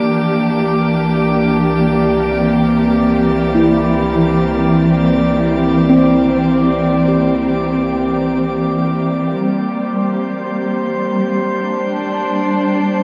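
Ambient music at a slow 51 BPM in 4/4, serene and melancholic, cut from a longer piece and bathed in a huge, dark reverb. A woody symphonic string section holds lush bowed chords with vibrato up front, while a ringing stainless-steel handpan plays bright, airy arpeggios in the background through a diffuse ambient delay until 10.0 s, and a drifting glass-harmonics texture adds glassy overtones with chorus high above. A round, deep sine sub bass fades out by 9.4 s, where the harmony moves from C7 to Gm.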